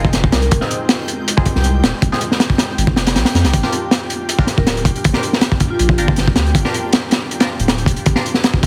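This drum and bass and jungle excerpt runs at 159 BPM in 4/4 with a raw, frenetic mood, driven by an up-front, crunchy breakbeat kit of gritty, rolled-off acoustic drums with a high-tuned snare and tight kick over a thick, saturated sub bass. Nasal, band-passed chord stabs with phaser and dub echo punch through a very quiet, ethereal pad and a reversed, granular swelling texture in the background, moving from Fm7 to Gm7 at 3.5 seconds. A mellow vibraphone with soft mallets and fast motor vibrato rings briefly at 0.3 seconds and again from 4.6 seconds, trailed by dub echo, all under a heavily compressed, radio-like sound with light studio reverb.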